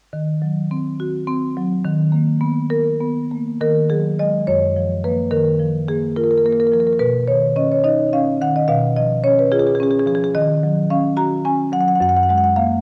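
Contemporary classical for solo marimba, this reflective, hypnotic fragment of a longer piece unfolds in a rubato 6/8, its woody rosewood bars struck with medium mallets and heard close and full up front from Gb2 to Bb5, moving into a second section at 3.6 s through rich chords such as Ebmadd11, Gbmaj7 and Db/Cb, all set in a reverberant recital hall and colored by worn, warbling cassette tape with pitch drift and a faint mains hum.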